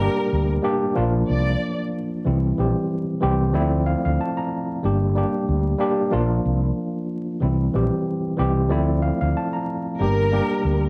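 Tough and moody, this boom-bap hip-hop excerpt at 93 BPM in G dorian sets a worn, slightly out-of-tune, lightly overdriven tine electric piano and an amped, up-front fretless electric bass with tube saturation and analog chorus under a distant, lush bowed violin section whose expressive vibrato and portamento appear only from 0.0 to 1.8 seconds and again at 10.0 seconds, all colored by cassette tape, vinyl crackle and light reverb over a Gm, Bb, C, Dm7 cycle.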